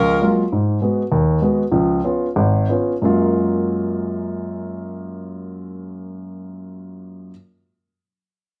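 A dark, mellow baby grand piano opens this brief, energetic jazz fragment in F# major, sitting up front with a swinging eighth-note feel at a brisk tempo of roughly 173 to 204 BPM in 4/4. Cut from a longer piece, it moves through F#maj9, G#m7 and C#7 before resolving back to F#maj9 at 3.0 seconds, easing its pace between 0.5 and 3.0 seconds. A moderate large-studio reverb gives the comping a roomy, rounded glow until the piano stops at 7.3 seconds.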